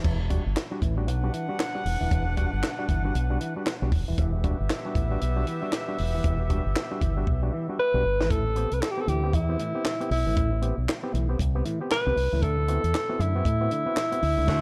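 A breathy, subtone alto saxophone carries the melody from 7.8 seconds in this hypnotic, cool funk excerpt at 116 BPM in E minor, swung on the sixteenths, riding over an up-front fingered electric bass through an envelope filter, stringy auto-wah clav stabs, and a compact cocktail drum kit with a tight kick, high-tuned snare, handclaps and dark cymbals that drops a fill before the chords move from Em9 to Am9 and D13, while a clear horn section with vibrato and tape echo plays a second line from 1.1 to 8.0 seconds, the whole set in a dark studio production with light reverb.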